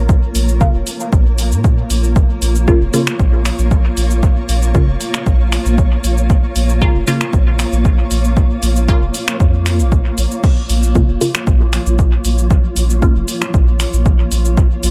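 Dub techno with a hazy, nocturnal mood, cut from a longer piece and held on a single minor chord, built on an up-front, punchy electronic kick and a round, soft sub bass that pumps beneath a cloudy, evolving granular pad and a flickering, grainy texture bathed in their own reverb. A tape-warm analog drum machine adds crash cymbal, finger snaps, hi-hat and shaker through dub echo, while a muted, resonant, detuned chord stab with a filter pluck and phaser enters at 0.6 s and drops out at 13.2 s. The mix is dry of room sound but heavy with echo.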